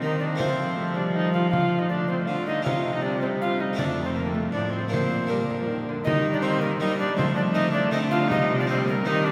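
Bathed in a long, wet cathedral reverb, this courtly, stately renaissance-style consort dance in triple time is a brief cut from a longer piece. An airy, chiffy alto recorder carries the melody with a straight, crisp tone, over a viola second line with light vibrato, a second reedy viola filling in the accompaniment, a rich gut-string cello on the bass, and a full, plucked French-style harpsichord. A small, bright frame drum sits in the background from 0.2 s, and the opening phrase begins again at 6.1 s as the harmony moves through F, Cm, F7, Bb and Eb.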